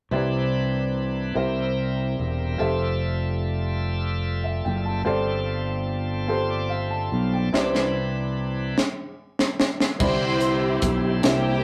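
Slow, hopeful gospel in 6/8 at 49 BPM in C major, where a clear, woody upright piano with audible action noise accompanies and a shouting tonewheel organ on slow rotary speaker sustains chords from Cmaj9 through C7, Fmaj9 and G9sus4 over a growly, punchy fingered electric bass, before a gritty fusion drum kit with a high-tuned snare enters at 7.5 s with a fill and a lush bowed string section takes the melody at 10.0 s, all in a rough rehearsal-room recording with a short, wet ambience.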